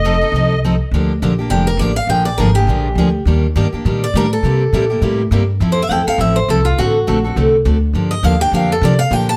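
Acoustic string swing in the jazz manouche style, fiery and bittersweet, moving at a brisk 205 BPM with a swung feel in G minor, opens on a brief reedy, shimmering note from a musette accordion dressed in plate reverb and analog delay that stops at 0.6 seconds. Upright bass, woody and pizzicato, anchors the low end while one bright picked steel-string guitar with audible finger squeak plays accompaniment through chords such as Gm7, Ebmaj7#11 and D7. From 1.5 seconds a second full-bodied picked steel-string guitar takes up a soloing line, all parts sitting up front in a light reverb in this excerpt cut from a longer piece.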